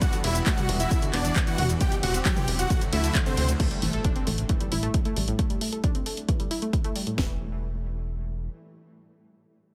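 Uplifting trance at 134 BPM in E minor, driving and emotional, this excerpt opens on a drop where huge, detuned supersaw chords carry the melody through a digital delay, with a reedy, gut-string chamber ensemble sustaining chords in the background and a round, chorused analog pluck spinning arpeggios. A heavy kick and cracking snare from a layered techno kit sit up front beside a tape-tinged analog drum machine of handclaps, hats, shaker, toms, ride and crash, while a funky, wave-folded bass with tube saturation pulses under the sidechain pumping. The supersaws stop at 3.5 s and the strings at 3.6 s, a very quiet electronic impact lands at 3.6 s, and the pluck's filter sweeps on into a heavily compressed, radio-like mix with light reverb.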